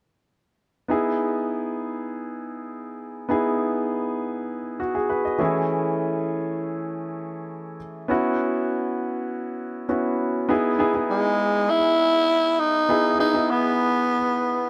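A clear concert grand piano opens at 0.9 seconds, laying down pop accompaniment with deep bass, long sustain and a touch of audible action noise that makes it feel intimate and up front. Its polished chords move from Emaj7 through Amaj7/E to F#7sus4, giving this short cut from a longer piece a glossy, nostalgic mood in a steady, straight four. At 10.5 seconds the harmony returns to Emaj7 for a new section, and at 11.1 seconds a raspy tenor saxophone enters as the solo melody, gritty in grain yet smooth on top, with light vibrato and scooped notes in a pop style. The horn sits forward and a little louder than the piano. A moderate, lush hall reverb with a long tail surrounds both instruments.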